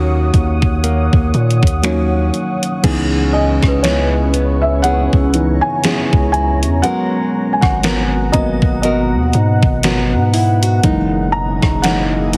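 A heavily compressed, radio-like sound with light reverb frames this sensual, late-night contemporary R&B piece at 60 BPM in 4/4 with a swung 16th feel, cut from a longer work and moving through D#m7, C#m7, G#m9 and F#13. A deep, sine-toned 808-style bass and a gated 80s drum machine sit up front, the drums entering at 0.3 seconds with a thumpy kick, overdriven gated-reverb snare, hi-hat, rim click, finger snaps and crash. Around them, a glassy, ethereal FM pad holds chorused chords, a dark, fingerpicked nylon-string guitar with audible finger squeak plays arpeggios through tape echo, and a soft, felt-muted upright piano takes a mellow, intimate solo from 2.8 seconds, while an inharmonic synth chime with tremolo rings faintly in the background from 3.3 seconds.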